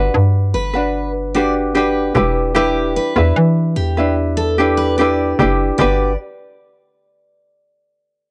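A light, fingerpicked ukulele, full-bodied picked steel-string guitar arpeggios and a hollow, bouncy, punchy FM bass start together at 0.0 s in this sunny, easy-going acoustic pop fragment at 74 BPM in G major, moving from Gmaj7 to Em7 and back to Gmaj7 at 5.8 s before the instruments stop around 6.2 s, set in light small-room reverb with the dry, gritty character of cassette tape.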